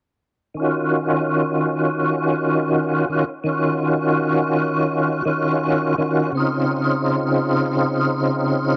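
A straight 4/4 pulse at 83 BPM carries this brooding, cinematic trip hop fragment in Eb dorian, where a full, lightly overdriven tonewheel organ sits up front from 0.5 seconds, its chorus vibrato and slow rotary speaker joined by tremolo, a low-pass filter, tape echo and cassette tape coloring in a wet booth as it holds Ebm9 before moving to Dbmaj9 at 6.4 seconds.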